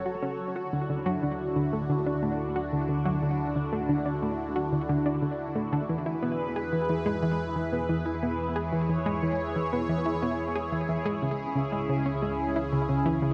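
A straight 4/4 pulse at 90 BPM carries this cosmic, expansive stretch of sequencer-driven ambient space music, where a swirling, detuned analog pad holds sustained chords through phaser and chorus, an up-front analog pluck with a fast attack and short decay repeats a riff through chorus and delay, and a deep, round analog bass with a ring-modulated edge fades in over the full 13.3 seconds, all set in a huge, wet reverb as the harmony moves from F#m through Dadd9 and E to C#m.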